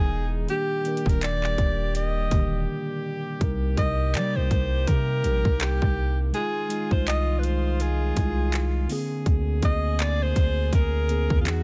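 This contemporary R&B piece has a late-night, longing mood and a swung sixteenth-note feel in four. A jazz-style alto saxophone carries the solo melody with a soft attack, vibrato and scooped notes, its tone colored by tape echo. A mellow, clean tine electric piano plays the accompaniment, while a close-miked brass section holds sustained chords with light vibrato in a classical style. Underneath, a deep, sine-toned 808-style bass sits up front with a fast attack and long decaying notes, and an electronic trap kit enters at 0.5 seconds with a hard-clipped kick, metallic hi-hats and handclaps. The harmony moves through Ebmaj7, Cm7, Fm7/C and Bb7/D, with a brief break from 2.7 to 3.4 seconds. The mix is dry, with little reverb, and this excerpt is cut from a longer piece.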